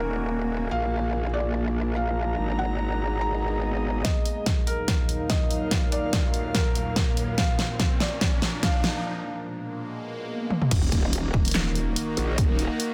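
A growling, overdriven growl bass anchors this aggressive, menacing half-time heavy wobble dubstep fragment, alongside a soft felt-muted upright piano melody with tape echo, a bright evolving wavetable pad and an airy breathy pad both pumping under sidechain, and background downlifter, riser and sub drop effects, before a punchy electronic kick and a big-room dance drum kit with a huge snare drive a build-up from 4.0 seconds and the growl bass returns for the drop at 10.7 seconds, briefly joined by a nasal vowel-sweep wobble bass.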